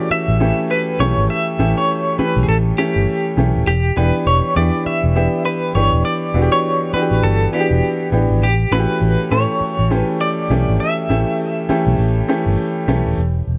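A light studio reverb gives this short cut from a longer piece a polished, close feel, with a confident, slick R&B and new jack swing groove at 101 BPM in 4/4, swung on the sixteenths and tuned to A4 = 444 Hz. A dark, round, foam-muted vintage electric bass sits up front from 0.1 seconds, beneath a clear concert grand piano whose open, deep-bottomed chords move from A7 to Em7 at 3.7 seconds and back to A7. On top, a picked, compressed electric guitar just at the edge of break-up carries the melody through a tremolo effect until 12.5 seconds.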